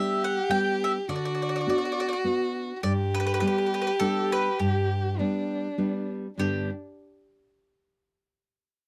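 A dry, close studio sound in a 1970s style, with a small booth's ambience, frames this short cut from a longer Italian folk serenade in G major, romantic and sunny, at 102 BPM in a lilting 3/4 with a light swing and rubato. A woody, double-strung picked mandolin carries the melody up front while a dark, bowed solo violin sings a second line with vibrato and portamento, and a full-bodied, fingerpicked nylon-string guitar supplies deep classical accompaniment. The harmony moves from G to D6 and back to G at 2.8 seconds, and a new section begins at 6.4 seconds just before all three instruments stop at 6.7 seconds.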